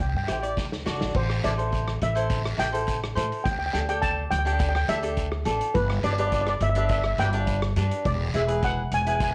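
A straight 4/4 calypso groove at 104 BPM sets a sunny, carefree mood in this short excerpt, cut from a longer piece. A mellow, shimmering steel pan carries the melody over a woody, thumpy upright bass and a vintage drum kit with dark cymbals and a rolled-off top, which plays a fill from 0.6 to 1.1 seconds. Crisp picked cavaquinho and a raspy guiro join at 0.3 seconds, with light reverb and worn cassette tape warble giving the whole recording a faded, old feel.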